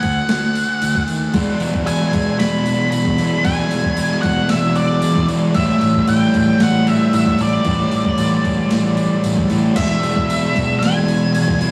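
Hazy and blissful, this short excerpt of shoegaze-leaning dream pop rock moves at 114 BPM in a straight 4/4, cut from a longer piece. From the start, a dark octave-fuzz lead guitar carries the melody high up, its distortion trailed by tape echo. Beneath it sits a thick fuzz guitar riff in the background, a round, punchy overdriven bass played with the fingers, and a gated 80s drum machine with a thumpy kick, a gated-reverb snare and crashes, joined by a very quiet, jingly tambourine. At 1.3 seconds an overdriven electric guitar enters up front with its own picked riff, as the chords move from D to E7, then to A7sus4 at 5.6 seconds and back to E7. The whole take has a rough rehearsal-room feel, with tube saturation and a stony room reverb that thickens the fuzzy haze.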